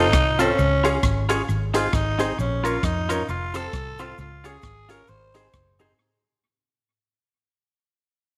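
A gritty, growling tenor saxophone carries the melody up front from the first moment, its raspy solo tone touched with light vibrato, while a clean, compressed semi-hollow guitar plays accompaniment through a spring reverb. This short, energetic ska cut has a mischievous swing on the eighth notes, and the whole clip sits inside a fade-out. A woody upright piano adds natural-sounding stabs, and a dark, foam-muted fingered electric bass sits round and amped in the low end. At 0.1 seconds a polished big-band drum kit joins with a punchy kick, hi-hat and rim click, its airy hall sound carrying tape echo. A grainy, very quiet cabasa adds a bright edge in a small room, and a moderate plate reverb gives the mix a snug ambience as the chords cycle through F, Db, Ab and Bbm.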